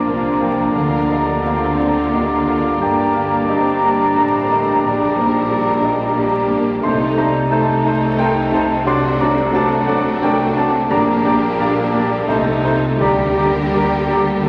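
A warm concert grand piano carries the melody up front from the opening, with deep bass, over a lush orchestra in a brooding, passionate romantic movement at 88 BPM in a rubato 3/4, settling into G minor from 6.8 s. A very quiet violin section with soft-attack vibrato also carries the melody, while a second violin section, an airy, distant flute ensemble, a mellow clarinet and a warm, smooth-topped oboe weave second lines; a roomy bassoon, smooth violas and hushed, tight French horns supply accompaniment and sustained chords, with focused cellos and double basses underneath. Timpani struck with hard mallets sound briefly at 0.8 s and again at 14.5 s, and the whole is bathed in concert-hall reverb with a layer of vinyl crackle.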